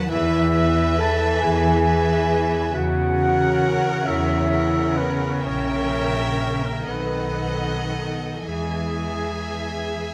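An up-front, clear double bass section anchors this serene, lyrical classical passage in a rubato 6/8, sharing the bass with a distant cello section, while a soft sul tasto violin section carries the melody over a rich second violin line and a focused viola accompaniment, a mellow flute ensemble in the background and a roomy oboe add second lines, and a dark French horn section holds sustained chords under light reverb.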